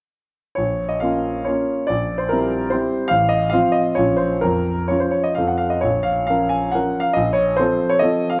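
A clear concert grand sits up front in a moderate recital hall reverb, its deep bass and open tone ringing through this brief solo piano fragment cut from a longer classical work. In Bb minor and triple time, the romantic dance moves with dotted rhythms and a free rubato between 122 and 159 BPM, its mood capricious and nostalgic. The piano plays from 0.6 to 8.4 seconds, spanning A1 to Ab5, and the harmony moves through Bbm, C7/Bb, F/A and F before settling on F/Bb.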